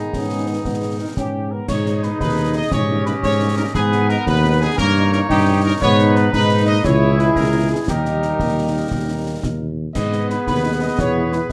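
In a straight 6/8 feel, this resolute, martial march for wind band sets a mellow, distant trumpet section on the melody over a clear woodwind second line, very quiet French horn accompaniment, sustained trombone chords and an up-front, smooth-topped tuba bass, while a vintage-toned euphonium adds a brief second line until 1.7 s and close, dry concert snare drum, concert bass drum and dark clash cymbals complete the ensemble beneath light reverb.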